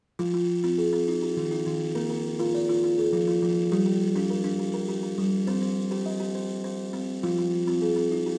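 This southern African traditional piece has a rippling, hypnotic mood at 136 BPM in a straight 12/8, in F on an equiheptatonic tuning. A single buzzing kalimba plays arpeggios from 0.2 to 8.4 seconds, its thumb-plucked tines sounding woody and ringing off a solid board, close-miked, full and up front. The harmony moves through Fm, Eb and Bb, back to Fm, then on to Gm and Cm before returning to Fm, set in a large, reverberant studio room as a short excerpt of a longer performance.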